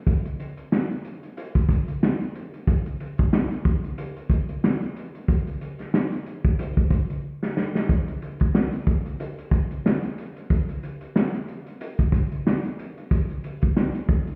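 Hip hop excerpt at 92 BPM in 4/4 with a light 16th-note swing, tough and moody, built on a lo-fi vintage acoustic drum kit of tight kick, medium-tuned snare and hi-hat that sits up front with a muffled, rolled-off top, heard as if through a wall in a stone room with a moderate echo-chamber reverb, and a drum fill at 7.2 seconds leads into a new section at 7.9 seconds.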